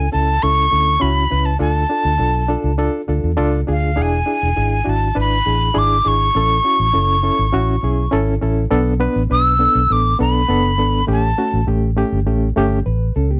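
A breathy, bright jazz flute with vibrato carries the melody up front in this warm, danceable excerpt of uptempo 1960s-style soul at 101 BPM in A major, over a barky, reedy electric piano with light overdrive and fast tremolo and a round, punchy, foam-muted electric bass, the flute dropping out at 11.7 seconds as the chords move from A through Dm and E7 to Bm7 and A7 in a light reverb.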